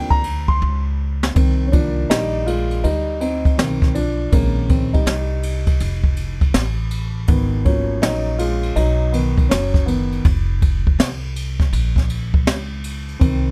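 Dry and close, with little reverb, this mellow, cool jazz-hop excerpt moves at 81 BPM in 4/4 with a 16th-note swing, set in C phrygian over Cm11, Bbm11, Abm11 and Fsus4 chords. A dark, boxy baby grand piano with short sustain sits up front and carries a solo throughout, while a woody pizzicato upright bass with steel strings holds the low end. A brushed jazz kit with a high-tuned snare, boomy kick, hi-hat and ride cymbal, heard in a small room, plays a fill from 0.6 to 1.4 seconds before settling into the groove.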